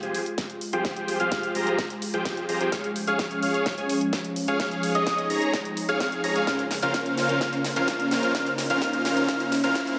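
Festival progressive house at 128 BPM, anthemic and euphoric, this ten-second build-up from a longer piece moves from Fmadd9 through Db/F to Bbmadd9 as a huge, detuned supersaw riff with sub octave and vibrato sits up front over a lush, chorused unison pad and a mellow, wave-folded unison lead arpeggiating high in its register, all three pumping with sidechain, while a fat, very quiet analog bass, a big-room kit with a huge snare and a drum fill, a punchy layered kick entering at 0.4 seconds, a filter sweep on the lead and a very quiet riser arriving at 4.2 seconds are all soaked in dreamy plate reverb.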